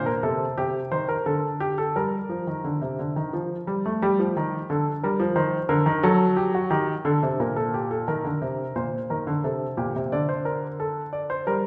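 In a straight 3/4 at 88 BPM, this joyful, elegant classical passage unfolds as a baroque-style two-part invention in G minor, cut from a longer piece. A baby grand piano plays alone from 0.0 to 11.7 s, ranging from Bb2 up to D5, its tone intimate and up front, with the action noise of the instrument plainly audible. The harmony moves from Bbsus2 through Cm and D5 to settle on Gm, then a middle section from 4.0 s passes through Cm/Eb, D7/F# and Gm/Bb. The opening material returns at 8.1 s over Eb5, Am7 and D5. A wet recital hall reverb of about 1.5 seconds surrounds the instrument, giving the sense of a church or concert hall.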